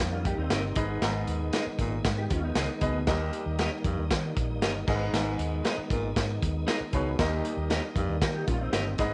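A light studio reverb and a rolled-off top end give this short cut of uptempo 1960s-style soul a snug, vintage sound, moving at 117 BPM in a straight 4/4 with a danceable, joyful mood. Up front sits a crunchy breakbeat kit, saturated and gritty, with a punchy kick, medium-tuned snare, hi-hat and crash cymbal, over a dark, foam-muted fingered electric bass that sounds round and amped. A clear but boxy grand piano with short sustain plays accompaniment, while a clean, picked electric guitar adds stabs in the background. A mellow, fingered electric guitar with ensemble chorus plays a riff that drops out at 3.0 seconds and returns at 8.2 seconds. Further back, a lightly overdriven tonewheel organ holds full sustained chords through a slow rotary speaker and chorus vibrato, and a warm baritone saxophone plays a low jazz-style riff with vibrato, all over harmony that moves between Eb and Abm.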